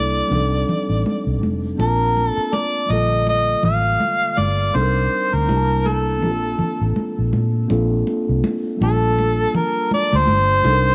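A gently swung 81 BPM groove in 4/4 sets up this smooth, lush 1970s-style soul cut in Bb major, with soft-handed, damped, high-tuned congas sitting in the background over a dark, round, foam-muted fingered electric bass. A mellow, clean tine electric piano carries rich ninth and thirteenth chords through its built-in speakers, while an up-front harmonica sings the warm melody with vibrato, scooped notes and tongue slaps. From 7.7 seconds the harmonica stretches into a jazz-style solo, all bathed in a moderate plate reverb.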